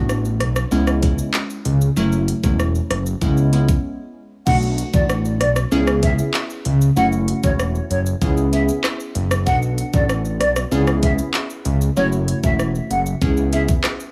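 A glassy wavetable pluck and a fat analog bass open together at 0.0 s, setting a hypnotic, tough dancehall groove at 96 BPM in a straight 4/4, in C# phrygian over a cycling Bm7, C#m7, F#m7, C#m7 progression. The crystalline pluck carries a noise layer, ring modulation, a moving notch and a filter sweep under its chorus, while the thick, detuned sawtooth bass sits up front with a fast attack and its own filter sweep. An electronic island pop kit of knocking kick, crisp hi-hat, handclaps, rim click, shaker and crash cymbal is overdriven and pushed forward in the mix. After a brief break at 3.8 s, a hollow concert flute takes the melody at 4.5 s, its pure, tongued tone shaped by vibrato and tape echo. A small digital room ambience surrounds the parts in this excerpt cut from a longer piece.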